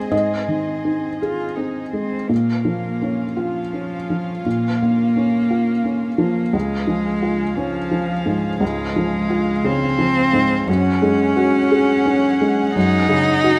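A felt-muted upright piano opens with a mellow, natural accompaniment, its action noise audible and its notes short in sustain, alongside a warm solo cello that plays a close, intimate second line sul tasto with an airy bow, soft attack and light vibrato. Behind them, a bowed chamber string section holds sustained chords with its own gentle vibrato. This longing, reflective neoclassical fragment in Bb minor moves in a rubato 6/8 at 58 BPM in dotted quarters, passing through Ab, Bbm, Db and Gbsus2 under light reverb, with piano and cello up front.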